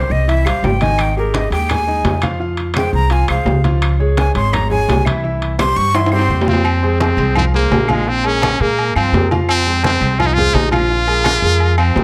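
Salsa at a fiery, driving 169 BPM in 4/4, cut from a longer piece and settling into F minor from 6.7 s. A breathy, metal jazz flute carries the opening solo up front, its crisp attack and chiff cutting through, while a brilliant grand piano with audible action noise supplies polished, intimate accompaniment. An up-front upright bass plucks a dark, thumpy line on gut strings beneath the percussion: low-tuned congas with thick skin in the background, ringing, vintage-sounding metal-shell timbales and agogo bells, and very quiet, woody claves. A drum fill at 5.9 s closes the flute solo, and a punchy trumpet with vibrato takes over the melody from 6.1 s, present and up front in a pop style. Close, detailed microphones and light reverb keep the sound immediate.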